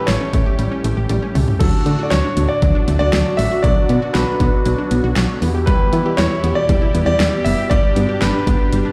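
A punchy deep house drum kit drives this upbeat, wistful synth-pop excerpt at 118 BPM in a straight 4/4, with a fat snare up front and a drum fill from 1.1 to 1.6 s leading into a chord run from D through Bm and Em to G in D major. A round, dark FM bass sits alongside the drums, while a swirling, detuned analog pad treated with phaser and chorus holds sustained chords and a bright sawtooth unison pluck plays delayed arpeggios in the background. Up front, an intimate concert grand piano with audible action noise and long sustain carries the melody through digital delay, all heard as if played on a big sound system in a bare stone room.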